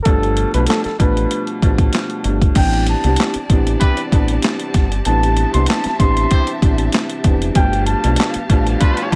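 Moody and reflective, this boom-bap hip-hop excerpt moves with a light swing, its chords drifting from G9 to Am11 and back to G9. Up front, a gritty, compressed, pitched-down sampler-style kit thumps along with a thumpy kick, a high-tuned snare, hi-hat, handclaps and crash. Beneath it sits a dark, round fingered electric bass. A worn, woody upright piano with a boxy, cassette-tinged tone and long sustain plays the accompaniment. A veiled bucket-muted trumpet carries a jazz-style solo melody with vibrato and scooped notes until 8.3 seconds. A rich bowed string section joins with expressive sustained chords at 2.6 seconds, and a distant, roomy horn section adds pop-style stabs from 3.8 seconds. Vinyl crackle, light reverb and a dulled top end give the whole piece a dusty, sampled feel.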